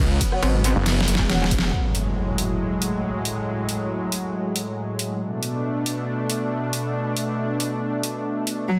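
A snarling, detuned saw bass growls to open this chaotic, aggressive half-time wobble dubstep cut, joined by a metallic FM wobble bass, a knocking overdriven kick, a dark, distant brass ensemble stabbing with sampler grit and tape echo, and an up-front kit of deep snare, bright hats, ride and rim clicks in studio reverb, while a lush supersaw pad with sidechain pumping sustains chords throughout, an electronic impact lands at 1.7 seconds, and a rich, bowed cello note with vibrato arrives at 8.7 seconds in a dense, heavily limited master.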